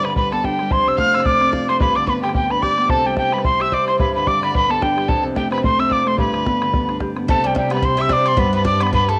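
A breathy, mellow metal whistle leads this lively, rollicking Celtic reel at 219 BPM in G mixolydian, its tongued chiff, vibrato and slightly unsteady tone sitting up front with rolled-off highs and a cassette-tape haze. Beneath it, a dark, woody solo fiddle plays a soft second line touched with tape echo, a ringing fingerpicked Celtic harp carries the swung accompaniment, and an open, boomy bodhran keeps the beat close and dry. At 7.3 seconds a metallic, double-strung Irish bouzouki and a veiled, muted cello join in, all within a small-room ambience and spring reverb that give this short excerpt a homespun feel.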